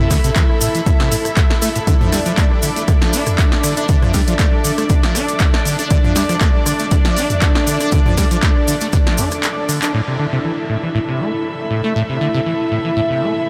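Trippy and gritty, this acid house fragment, cut from a longer piece, drifts through a dreamy mix soaked in a huge ambient reverb. A squelchy, resonant sawtooth acid bass plays a riff with lush chorus and tape echo, while a thick, warbling unison pad holds sustained chords that pump against the beat, and a rich, smooth bowed string section adds texture. Up front, a punchy, tape-warm electronic kick drives the groove alongside an analog drum machine of handclaps, hi-hat, rim click, snare and toms, its hats, snare and toms darkened by a low-pass filter, with a grainy tube shaker sitting in the background. The chords move from Am to Dm, and a break with a drum fill arrives at 9.4 s, topped by a band accent at 9.8 s. After the drum machine and shaker fall silent at 9.9 s, the harmony returns to Am as filter sweeps move across the acid bass and the pad through to the end.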